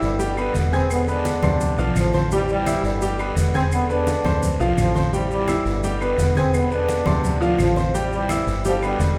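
Salsa with a driving, passionate feel, cut from a longer piece, where an up-front trombone section carries the melody with a light vibrato over a bright, polished concert grand piano, a dark, round fingered electric bass, and a percussion bed of compressed, low-tuned congas, raspy distant guiro, grainy maracas and very quiet woody claves, all set in a wet recital-hall reverb as the chords cycle through G, E7, Dm7 and Am7.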